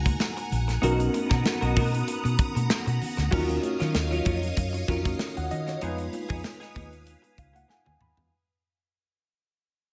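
The sound is polished and intimate, set in a small room ambience, with a punchy kick and up-front drums carrying this short, nocturnal piece of 1980s jazz-funk pop at 96 BPM in Eb minor, swung lightly on the sixteenths. A vintage muted fingered electric bass, dark, round and foam-muted, sits up front beside a modern studio drum kit of kick, medium-tuned snare, hi-hat, toms and crash cymbal. A worn, slightly out-of-tune tine electric piano, lightly overdriven and heard through built-in speakers with analog chorus, plays the accompaniment over chords moving from Abm9 and Bmaj7 to Ebm9 and Fm7b5. A swirling, bright string machine holds sustained sawtooth chords with slow attack, ensemble chorus and phaser, while a dark, clean, compressed semi-hollow electric guitar picks a riff with its own ensemble chorus. Very quiet, high-tuned congas with hard hands add a thin, damped edge, and the music fades out from 3.3 seconds as the electric piano plays a fill from 7.1 seconds and the drums add a fill at 7.7 seconds, giving an urban, late-night glow.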